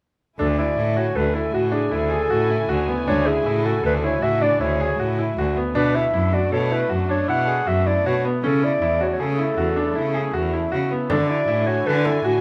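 Urgent yet pensive, this contemporary chamber piece moves at 157 BPM in an uneven 7/4 with a straight feel, cut from a longer work. A mellow solo clarinet carries the melody in a smooth classical style from F#4 to F#5, while a bright concert grand piano sits up front with brilliant arpeggios. A single bowed cello, biting and intense with light vibrato, holds the bass line close to the listener. Behind them, a muted string section played con sordino lays down veiled, dark sustained chords with a soft attack. The harmony moves from Dmaj9#11 through Bm7 and Amaj9 to Dadd9(#11), and a deep, saturated frame drum struck with hard hands enters only at 11.1 seconds. Light reverb and close, detailed microphones keep the sound intimate.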